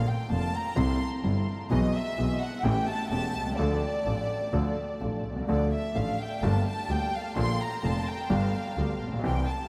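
Set in a 4/4 tango metre but played with a rubato feel, this brief dramatic and melancholic fragment is cut from a longer piece. A bowed studio violin section carries the featured line from 0.0 to 9.7 seconds, sitting up front with an intimate, close, sul tasto tone, soft attacks, vibrato and a touch of delay. Beneath it, a present grand piano supplies the accompaniment while a single bowed double bass, clear and focused with its own vibrato, holds the low register until 9.4 seconds. The harmony moves from Bb through Cadd9, E/B and A7 to a long stretch on Dm, then on to Gm, Bb and finally G. The whole mix is dreamy and soaked in a huge ambient reverb with a 7.5-second tail, and the instruments are tuned to A4 = 438 Hz.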